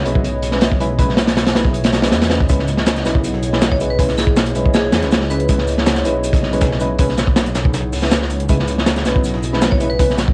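A crunchy, saturated breakbeat kit sits up front with a tight kick and rolled-off top, driving this frenetic, raw drum and bass and jungle cut in C# minor at 160 BPM. A second, pitched-up sampler-style breakbeat kit joins quietly at 2.5 seconds, while a dark, rumbling detuned saw bass and deep, nasal chord stabs with dub echo circle a single C#m7 chord. A warbling, nostalgic tape-like pad glows in the background, and a metallic, ringing vibraphone played with hard mallets surfaces briefly at 3.7 seconds, all wrapped in a home cassette recording, a small room and vinyl crackle.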